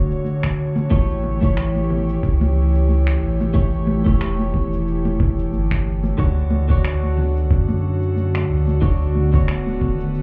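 Heard as if muffled through a wall, with a club-style reverb and light digital ambience, this relaxed, sunny sunset chillout excerpt moves at 91 BPM in D major with a gentle 16th-note swing, settling on Dmaj7 before shifting to A7 at 0.9 seconds and returning to Dmaj7 at 6.2 seconds. A round, mellow sine sub bass sits up front beneath a gritty, overdriven electronic kick drum, while layered electronic cabasa and finger snaps, also overdriven, join at 0.1 seconds, followed at 0.2 seconds by very quiet, close and dry congas struck with hard hands. Above them, a clean, picked electric guitar with digital delay plays accompaniment and an airy, breathy pad with a noise layer, slow attack and chorus holds bright sustained chords.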